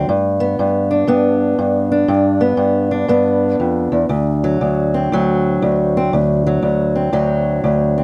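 A fingerpicked acoustic archtop guitar plays alone through this short, soulful blues excerpt, its fresh strings giving a boxy, warm tone with audible finger squeak. The feel is a gritty swing in four. The harmony moves from G to D7 at 4.1 seconds, the guitar ranging from low D2 up to D4. Recorded with close, detailed microphones and very little reverb, the instrument sits up front, every pluck clearly present. The clip is cut from a longer piece and lasts about 8 seconds.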